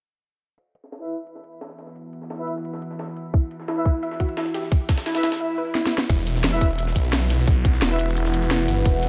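A straight 4/4 pulse at 174 BPM drives this aggressive, tense slice of dark technical drum and bass, where a drum kit with a cracking snare and a gritty, compressed breakbeat sampler-style kit in the background back a deep, warbling ambient pad with vintage 12-bit grit and a tight classical brass ensemble playing stabs, both pad and brass under filter sweeps; soft, mellow pluck arpeggios and a tight, up-front electronic kick join at 3.3 s, and a very quiet electronic swell and drum fill lead into the drop at 6.1 s, where a snarling, growling distorted saw bass surges forward, the whole dreamy mix soaked in cathedral reverb.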